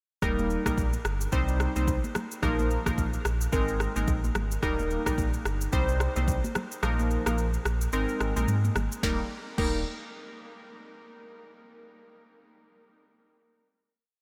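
Glassy digital keys sit up front with a chorus shimmer and a filter sweep, playing syncopated chords whose notes strike quickly and decay across a sunny, breezy afrobeats piece at 109 BPM in Eb major, with a lilting sixteenth-note swing. Beneath them, a deep, full sub bass doubled at the octave drives a bouncy syncopated line with a fast attack and sustained tone. The electronic afro-pop drum kit is produced and up front, pairing a soft but deep kick and a sharp snare with syncopated rim clicks, shaker and crash cymbal, while very quiet, close and dry congas with a bright, high-tuned skin add interlocking patterns played with soft hands. The harmony cycles twice through Eb, Cm, Bbsus4 and Abadd9 under a light reverb, and the kick drops out from 6.8 to 9.0 seconds before the piece settles on a final Eb chord at 9.0 seconds.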